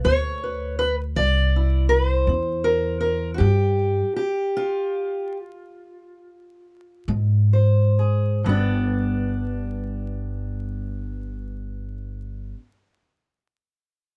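Laid-back and soulful, this short excerpt of acoustic country blues moves at a slow 42-54 BPM in a straight 12/8, centred on G mixolydian and tuned to A4 = 442 Hz. A dark, boxy parlour steel-string acoustic guitar carries the melody, fingerpicked and up front, ranging from G2 to D5. Beneath it, an upright bass plucked pizzicato on steel strings gives a woody low end from G1 to Ab2, sitting close and present in the mix. The harmony moves from a rootless G through C to Fsus2/G, then Ab, before returning to G at 8.5 seconds as a second section begins. The tempo slows from 1.9 to 8.5 seconds, with a stop between 3.4 and 7.1 seconds. The sound is dry and intimate, with close, detailed miking and vinyl crackle.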